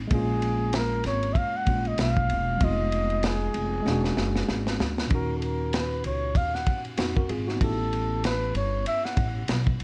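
A swung, mellow jazz-hop groove at 96 BPM in Eb minor rides on a crunchy breakbeat kit with a punchy kick, dark cymbals and gritty 12-bit sampler saturation, while a woody, thumpy pizzicato upright bass anchors the low end and a worn, slightly out-of-tune tine electric piano adds lightly overdriven chords through Bbm7, Fm7b5, E13, Ebm9 and A9. Over the top, a breathy solo flugelhorn carries the cool melody with light vibrato, scooped notes and tape echo. A drum fill arrives at 3.9 seconds, and the whole excerpt sits in a dark, warm production with light reverb and a rolled-off top on the drums.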